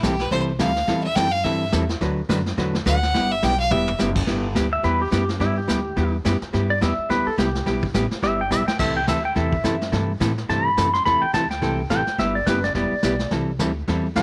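Cheerful and playful, this brisk western swing in G major at 212 BPM swings its eighths, opening with a biting, airy-bowed fiddle solo up front that runs until 4.0 seconds. A clean, hollow-body archtop guitar picks the accompaniment over a woody, thumpy pizzicato upright bass and a vintage brush kit with dark cymbals and a punchy kick, which plays a fill at 3.4 seconds. From 4.7 seconds a compressed, fingerpicked pedal steel guitar takes the solo with slide and volume swells, while the band sits in a small room with light reverb.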